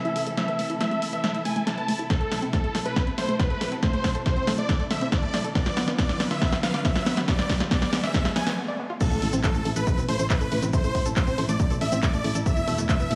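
A lush hall reverb frames this soaring, bittersweet uplifting trance excerpt, where a huge, euphoric supersaw lead carries the melody under a low-pass filter sweep, sidechain pumping and dub echo. Beneath it, a bowed string section holds smooth, expressive chords in the background, while a tight, detuned sequenced synth runs arpeggios with chorus and its own filter sweep through the build-up. A dry, punchy analog drum machine plays a fill of snare, handclaps, hi-hat, shaker and crash from the start, and an up-front electronic kick joins at 2.1 seconds. A very quiet riser enters at 4.2 seconds, a brief break follows at 8.6 seconds, and the drop lands at 9.0 seconds with an impact and a round, fast-attack FM bass warmed by tube saturation. The harmony moves from Esus4 through Amadd9 and Bdim before returning to Amadd9 and closing on Esus4.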